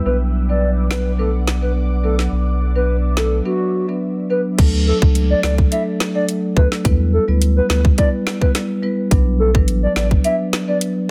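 A hollow, softly warbling clarinet-like synth lead with chorus and vibrato carries the melody through this hypnotic, tough dancehall excerpt in B minor at 106 BPM, over dry, close-miked marimba accompaniment, a deep, round sine sub bass, an up-front electronic island pop drum kit with a tight kick, woody snare and metallic hats entering at 0.9 seconds, and an ethereal, airy pad with phaser and sidechain pumping that stops at 4.6 seconds as the chords move from Bm through D and Em, in a dense, heavily limited modern master.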